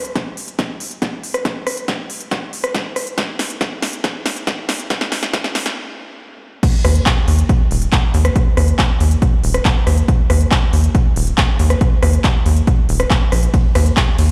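A straight 4/4 pulse at 139 BPM drives this bittersweet, driving uplifting trance excerpt, where a punchy, tape-warm analog kick and an overdriven, layered big-room kit of snare, handclaps, rim clicks, crisp sidechain-pumped hi-hats, crash and ride cymbals build through a drum fill to a brief stop at 5.8 seconds, before the drop at 6.6 seconds brings in a tight sawtooth-and-square sequencer bass from 6.8 seconds with a mellow filter pluck and fast attack, the mix kept dry yet ringing through a bare stone room on a big sound system.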